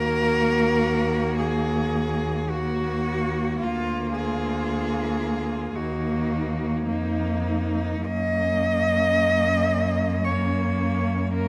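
A moderate recital hall reverb surrounds this short passage, cut from a longer piece, for a quartet of bowed cellos, each a single player. The mood is tender and lyrical, with a slow, rubato feel in 4/4 that lets the phrases breathe. Up front and close, the lead cello carries the melody with a rich, smooth and even tone and vibrato. Beneath it, a second cello sits in the background with an expressive line marked by vibrato and portamento, while a warm-toned cello plays a single accompanying note with its own sliding, singing expression. The bass cello, also up front, anchors the harmony with a smooth, even sound as the chords move from Ebm to Bb/D at 3.6 seconds, back to Ebm at 5.8 seconds, and on to Gb at 8.0 seconds.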